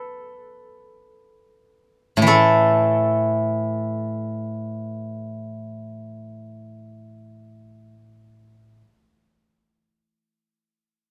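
Elegant and serene, this brief cut from a longer piece of traditional Chinese music features a solo steel-string zither played with fingerpicks in free time, its silvery, ringing tone sitting up front across a range from A2 to B4, easing into a slower pace over the first 2.3 seconds before continuing alone to 8.9 seconds, captured by close, detailed microphones with light reverb.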